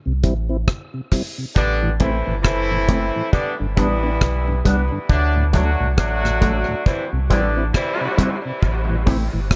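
A dry, up-front reggae drum kit anchors this short dub reggae fragment, its tight kick, hi-hat and rim click moving at a slow 68 BPM in 4/4 with a gentle swing on the sixteenths. Beneath it, a round, sine-like sub bass holds the low end, while a dark tonewheel organ with chorus vibrato and a slow rotary speaker fills in the harmony over a C, Am, G, D progression. After an opening break, a clear, vintage-sounding horn section steps forward at 1.6 seconds, its tight pop-style lines carrying light vibrato, octave doubling and a trail of tape echo. At 2.0 seconds a twangy electric guitar with an envelope filter slips in behind, clean and compressed, dressed in lush chorus and its own tape echo. Light reverb gives the whole a spacious, meditative air.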